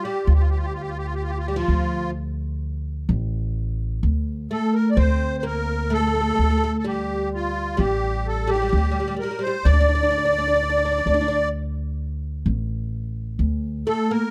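A reedy, shimmering musette accordion carries the melody up front in this hypnotic, longing Arabic excerpt in 10/8, joined by a woody, plectrum-plucked fretless oud with double strings on a second line and anchored by a growly, thumpy pizzicato upright bass, also up front, in a small room with moderate ambience.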